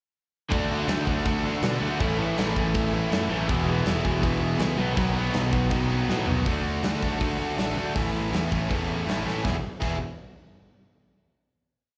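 Upbeat, rebellious punk rock at 161 BPM, captured as a live club gig through the venue's PA, where a bright, up-front distorted guitar with slapback echo drives eighth-note barre chords over a biting background guitar driving eighth-note power chords and a double-tracked overdriven guitar ringing out chords until 6.3 s, all anchored by a growly, fuzz-soaked picked bass and a big-room acoustic drum kit with a punchy kick and rolled-off top pounding a fast punk groove, as the D, A, E, B riff gives way after a drum fill at 6.1 s to an outro that lands on a final E chord at 9.4 s.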